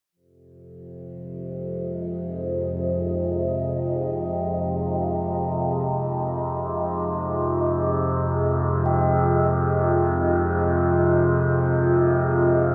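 An up-front, resonant drone of sawtooth and sine tones with moving overtones and chorus opens this ominous dark ambient drone at 0.8 s, in free time, in F minor and tuned to A4 = 441 Hz, and a deep, moody, detuned pad with a sub octave joins at 0.9 s holding an Fmadd9 chord, while from 8.9 s a mellow, metallic bronze singing bowl struck with a felt mallet rings with slow beating, close and dry in the background, inside a vast echoing cathedral reverb and a cassette-tape sound.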